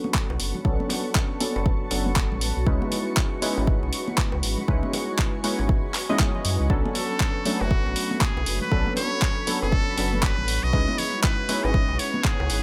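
Round, detuned sawtooth key stabs with chorus, 12-bit sampler grit, sidechain pumping, tape echo and a filter sweep open this deep, smooth deep house excerpt at 119 BPM with swung sixteenths, alongside vintage, band-limited congas and bongos and a cloudy, evolving granular pad that pumps and sits in its own reverb, while an up-front, tape-warm kick, handclaps and hi-hat and a full sine-and-triangle sub bass with octave soon join over Bm9 and C#m9 chords, before a nasal, brilliant straight-muted trumpet with vibrato and dub echo takes the solo at 7.0 seconds in a dry mix.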